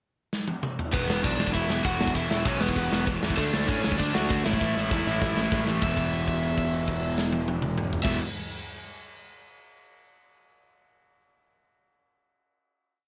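A double-tracked, crunchy overdriven guitar drives this short, rebellious punk rock piece at 197 BPM with eighth-note power chords moving through E5, D and A5, while a bright, compressed lead guitar plays a motif-based melody partly doubled in octaves. A big-room acoustic drum kit with a punchy kick and a medium-tuned snare opens with a fill at 0.3 seconds and keeps an upbeat two-step groove. A growly fuzz bass adds driving eighth notes underneath, before everyone settles on a held E5 chord from 5.8 seconds, all with little reverb.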